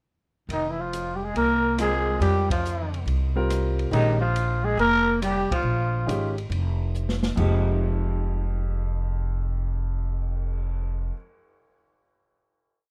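Modal jazz in F minor at 140 BPM, swung in 4/4, with a searching, spiritual mood across this short complete piece. A growling trumpet, raspy and gritty yet set back in a roomy space, carries a hook-based melody from 0.5 seconds, while a breathy alto saxophone with light vibrato and a soft subtone attack doubles it an octave below as a second line. Up front, a woody pizzicato upright bass plays in a two-feel, and an open jazz drum kit with dark cymbals, a boomy kick and a rolled-off top keeps a ride cymbal pattern, adding hi-hat, snare, rim clicks, crash and cymbal swells. A clear concert grand piano with deep bass joins at 1.8 seconds, comping in syncopated quartal voicings over Fmadd9 and Bbm7 harmony. The band hits accents together, and after the horns drop out a drum fill at 6.9 seconds leads into a held final Fm9 chord at 7.4 seconds, all wrapped in light reverb.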